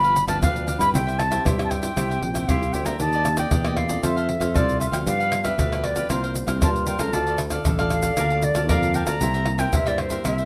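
Playful and lively, this short samba-choro passage at 116 BPM in 4/4 features an airy, distant silver concert flute carrying the melody with vibrato and tongued notes, over crisp picked cavaquinho, a thumb-plucked classical nylon-string guitar sitting in the background with the odd finger squeak, a bright, growly sustaining fretless electric bass, and close, dry percussion up front from tube shaker, pandeiro, tight surdo and tamborim played with soft hands, all within a moderate studio reverb as the harmony moves from G7 through Ebmaj7 and Bbmaj7/D to a closing C7.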